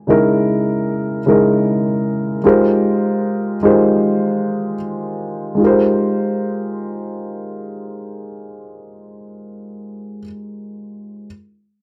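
A relaxed 4/4 pulse at 76 BPM, with a gentle 16th-note swing, sets an unhurried R&B groove in A-flat major. This short passage, taken from a longer piece, features a solo grand piano playing accompaniment from 0.1 to 11.3 seconds. The piano spans the range from Db3 to C5 and sits up front with a dark, mellow and intimate character, its vintage tone carrying audible action noise. The harmony opens on a Dbm6 chord and settles into a lush Abmaj13 at 2.4 seconds, and the music moves into a new section at 5.6 seconds. A touch of light reverb colours a dry, close recording with a 1970s studio feel, giving the whole a smooth, warm mood.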